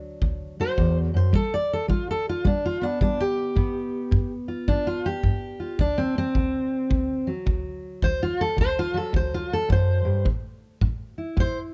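Acoustic country blues in a soulful, gritty mood, this excerpt swings at 108 BPM in D mixolydian as a fingerpicked steel-string acoustic guitar with a woody, full-bodied jumbo tone and old strings carries the melody up front over D, G7, D7 and A5 chords, while a tight, natural kick drum sits beneath from 0.2 to 11.5 seconds, all captured with close, detailed microphones and a light reverb.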